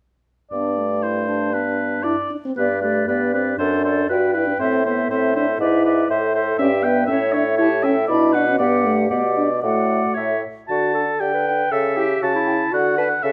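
Classical-period wind quintet music, graceful and cheerful, moves in a quick two-beat metre with a flexible rubato feel, taken from a longer movement. An up-front, warm oboe carries the second line over a soft-attacked bassoon bass with light vibrato, while a clear clarinet and a dark, close-miked French horn supply the accompaniment. At 2.6 s a silvery concert flute enters with the expressive melody, pure and crisp with vibrato yet distant in the background, and the quintet sits in a moderate large-studio reverb.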